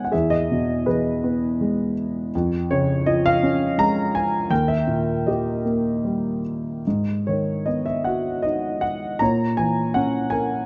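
A dark, mellow grand piano plays alone, up front and intimate with audible action noise, in this reflective, wistful classical fragment in 3/4 with a rubato feel, cut from a longer piece and captured by close, detailed microphones in light reverb.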